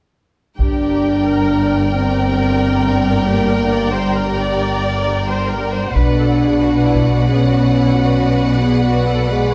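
A close, detailed recording with light reverb carries this epic, relentless orchestral film-score excerpt in 12/8 at 90 BPM, where lush, vibrato-rich violins sing a soft-attacked melody over a second violin line and rich violas, dark, roomy French horns sustain chords, a focused, up-front double bass section and distant cellos with portamento anchor the low end, and a dry, heavy-sticked taiko ensemble strikes at 0.6 and 6.0 seconds as the harmony moves from G minor to B minor.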